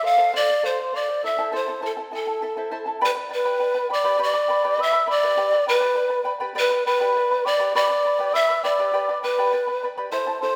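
From the very start, a breathy, close-miked bamboo pan flute carries the melody up front with vibrato and a tongued chiff, alongside a large wooden quena playing an airy, end-blown second line with rolled-off highs and a bright, shimmering fingerpicked charango on double strings, moving through F and Am before settling on G at 3.0 s in this earthy, wistful Andean folk excerpt in a straight 6/8 at 68 BPM (dotted quarters), set in a moderate recital-hall reverb.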